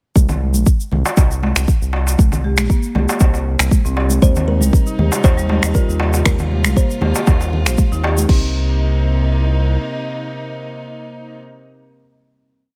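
An earthy, hypnotic afro house piece in C minor at 118 BPM opens at 0.2 seconds with a four-on-the-floor tape-warm kick, a round, pumping analog bass in a dotted rhythm, bright interlocking congas and a grainy egg shaker, with a crisp metal-shell darbuka entering a moment later and deep house snaps and crash joining, then a dark marimba step sequence with delay, a woody, gritty kalimba hook from 4.2 seconds and floating sul tasto chamber strings that carry the closing Cm7 chord to 11.4 seconds.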